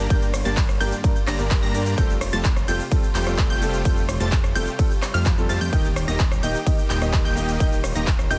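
A punchy, layered electronic kick sits up front from 0.1 s, driving this anthemic, emotional festival progressive house excerpt at 128 BPM in a straight 4/4. Around it, an overdriven big-room dance kit, re-recorded in a large room, adds crisp hi-hats, handclaps, cabasa, ride cymbal and rim clicks. Huge, bright supersaw chords carry the riff, and a fat, saturated analog bass with a filter pluck holds the low end; both breathe with sidechain pumping, and the chords also carry delay. High above, a lush unison pluck with a noise layer and a moving notch spins decaying arpeggios through pumping and delay, while an intimate grand piano with audible action noise and a boxy tone plays accompaniment with the same pumping and delay. A very quiet, smooth symphonic string section sustains bowed chords with vibrato as the harmony moves from G minor to Fadd9 at 2.0 s and E-flat at 5.7 s. The mix sits in digital ambience under a dense, heavily limited modern master.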